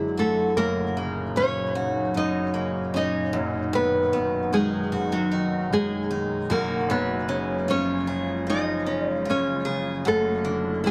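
Emotional and hopeful, this short pop passage sets an up-front, fingerpicked nylon-string guitar melody with fresh strings, finger squeak and digital delay over a clear concert grand piano with deep, open bass, while a picked acoustic archtop guitar adds warm, delayed arpeggios and a mellow, ethereal FM pad with ensemble chorus and its own reverb holds glassy sustained chords in the background, all in a light studio reverb.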